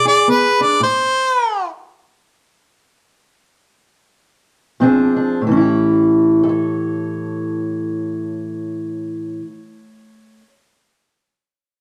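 A clear harmonica and a fingerpicked steel-string acoustic guitar open together in this short cut from a longer acoustic country blues piece, set in A mixolydian and played in free time with a rollicking, laid-back mood. The harmonica sits up front with a jazz-inflected solo voice, leaning on vibrato and scooped notes over a rootless E7, and it carries on briefly after the guitar drops out at 1.3 seconds. The music then slows and comes to a stop, and the guitar returns at 4.8 seconds on a Bb9 before settling onto A7 for the closing stretch. That guitar has a dark, boxy parlour character and stays prominent in the mix. The two players sound as if they are sharing one room, with a moderate large-studio reverb giving the performance an open, natural air.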